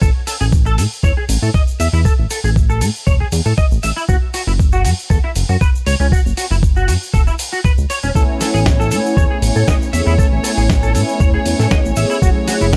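A glossy, chorused synth bass sits up front beside a gritty, thumpy electronic kick in this cosmic, sensual nu-disco excerpt at 118 BPM, joined by a clean, picked electric guitar riff wrapped in ensemble chorus and tape echo, a dusty soul sampler-style kit of hi-hat and medium-tuned snare, and a band-limited egg shaker in the background, before a dark, detuned synth brass with sidechain pumping enters at 8.1 s and an intimate, sul tasto string section adds sustained chords from 8.2 s, set in a digital ambience.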